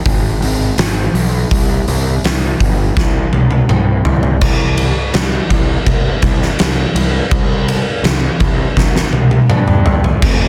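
Dark and cathartic, this cut from a longer piece of quiet-loud alternative rock moves at 83 BPM in a straight 4/4, driven by a fuzz-soaked picked electric bass that growls up front between F1 and G2 alongside an oversized, low-tuned acoustic drum kit with a boomy kick, fat snare, dark cymbals and a gritty, saturated, pumping big-room sound. The drums cover crash, ride, hi-hat, snare, kick and toms, with fills from 3.0 to 4.4 seconds and again from 8.8 to 10.2 seconds that close each of the two sections. The mix is dry, dense and heavily limited in a modern style.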